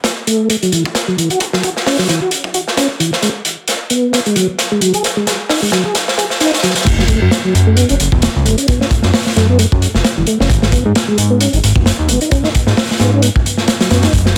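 A swung 132 BPM breakbeat groove in F# dorian drives this funky, swaggering excerpt, where a crunchy, saturated acoustic kit of kick, snare, hi-hat and crash runs a build-up with a fill from 3.2 seconds, a mellow, round tonewheel organ riff glows through slow rotary speaker, chorus vibrato, delay and sampler grit over F#m7 and G#m7, and a fat sawtooth analog bass with a filter sweep arrives at 6.9 seconds for the drop under a dense, heavily limited master.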